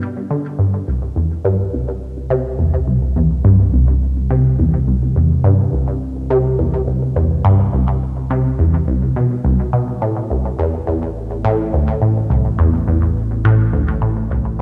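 Ambient, sequencer-driven space music with an expansive, cosmic mood, moving in a straight 4/4 feel. A resonant blip pluck carries the riff from 0.3 seconds, its juicy, squelchy tone built on detuned sawtooth and triangle waves with ring modulation, a snappy filter pluck and a phaser and delay, sitting up front in the mix. At 0.9 seconds a fat analog bass joins underneath, thick and sustained, its detuned, wave-folded sawtooth and triangle sound shaped by a filter sweep. The harmony settles on a C chord before giving way to an unharmonized stretch from 10.0 seconds, and this excerpt, cut from a longer piece, fades out toward its end at 14.6 seconds. A moderate plate reverb and a dark, warm production give the whole a deep, spacious feel.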